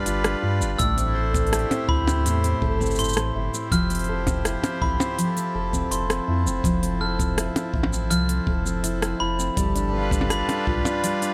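Folktronica with a pastoral, warm mood, this brief cut from a longer piece rests on dark, full-bodied fingerpicked steel-string acoustic guitar arpeggios, roughened with vintage 12-bit sampler grit and digital delay, over reedy, close-miked accordion chords and a round, sine-like sub bass, moving through G7, Am7 and Fmaj7. A bell-like glockenspiel played with brass mallets rings out a high second line through tape echo and plate reverb. Up front, an overdriven minimal click kit of clicky hats, rim clicks, shaker and percussion blips sits over a boomy acoustic kick that enters in the background at 0.8 seconds.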